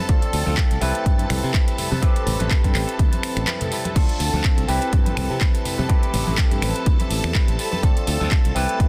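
Sensual and funky, this filtered disco house groove moves at 124 BPM in 4/4 with a light swing on the sixteenths, set in A minor and cut from a longer piece. A gritty, barky overdriven tine electric piano, heard through a combo amp with phaser, carries the accompaniment. A lush string machine holds sustained chords with ensemble chorus and a soft attack, and a clean, twangy electric guitar, recorded direct and compressed, picks out a riff. A growly fingered electric bass enters at 0.1 seconds alongside a punchy, up-front electronic kick, a house kit of metallic hats, finger snaps, handclaps and crash, and a distant, very quiet tube shaker and congas. The piano, strings, guitar and bass all sit under a low-pass filter and pump with the sidechain, as do the hats and cymbals, while the harmony cycles through Dm7, Cmaj7 and Am9 in a dense, heavily limited mix with little reverb.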